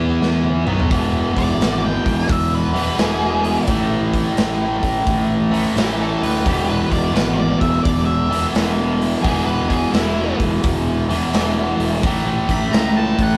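This excerpt opens on a double-tracked, overdriven guitar riff sitting up front, over a growly fuzz bass played with the fingers, and a raw garage drum kit comes in at 0.2 s with a short fill. It is blues rock in the power-trio style with a southern rock swagger, driving along at 86 BPM in 4/4 with a swung eighth-note feel in E mixolydian. The solo section begins at 0.9 s, and an octave-fuzz lead guitar takes the melody from 1.4 s with a picked, warm, distorted tone. The harmony moves between E and A, with a brief B5 near the start. The drums have a punchy kick, a medium-tuned snare and a gritty, saturated character with a rolled-off top, ringing in a bright, pumping stone room. The recording has a rough rehearsal-room sound, with saturation and a moderate reverb.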